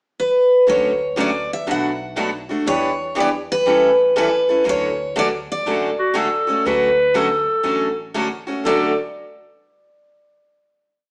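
At a swung 120 BPM in 4/4, this short, charming and playful jazz manouche piece in D major sets a bright, jumbo-bodied steel-string guitar melody of motif-based phrases up front over four-to-the-bar rhythm guitar accented on two and four, a boxy archtop with finger squeak, and a woody, thumpy upright bass playing two-beat root and fifth in the background, while a punchy vintage clarinet enters at 6.0 s with answering phrases in the melody's rests, all played live in a stone room with a small speaker sound.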